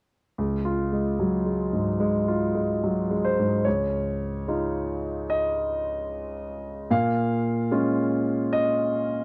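Worn, warbling cassette tape and light reverb color this tender, intimate fragment of a classical piece, its pitch drifting gently as a concert grand piano plays from 0.4 to 9.2 seconds. The piano sits up front with a clear, natural tone, deep bass and long sustain, accompanying in Db major at a rubato 74 BPM in 4/4. Its harmony moves from Db to Dbadd9 at 3.7 seconds, where a new section begins, and settles on Bbm7 near the close.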